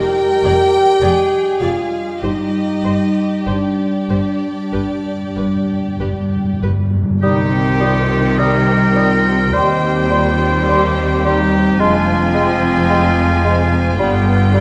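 A clear, lightly vibrato solo oboe stands out in this slow, rubato passage for symphony orchestra in C minor, cut from a longer romantic movement that feels solemn and melancholic at roughly 47-55 BPM in 4/4. From the opening, a lush, distant violin section carries the melody with smooth, even vibrato over a second, more focused violin line, while a mellow French horn section holds sustained chords and a bright concert harp rings out fingerpicked arpeggios. Almost at once the strings fill in beneath: violas add expressive portamento in the accompaniment, cellos and a warm double bass section ground the bass, and round, soft-mallet timpani enter at 4.7 seconds for a brief fill. At 7.2 seconds the harmony settles onto C minor as the woodwinds join: the oboe, a clear clarinet and an airy, hollow flute each add a second line, while a dark, roomy bassoon supports the accompaniment. The whole ensemble sits in a wet scoring-stage reverb that gives it a spacious, resonant glow.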